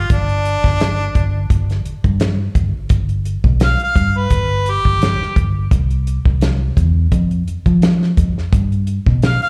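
A straight-eighth feel in 4/4, with a slight swing on the sixteenths, drives this brooding, mournful soul blues, cut from a longer piece. The acoustic drum kit sits up front with a dry, dark, smooth sound: a medium-tuned snare, a tight kick and hi-hat. A vintage muted, fingered electric bass plays in its low register with an amped, foam-muted tone that is round and punchy. Over them, a clear harmonica carries the melody as a pop-style solo, with light vibrato, overdrive and a slapback echo. The harmony rests on G5, moves to C at 5.7 seconds, drops its chords briefly at 7.1 seconds, and returns to G. It sounds like a live gig heard through a club's PA, with small room ambience and club reverb around the band.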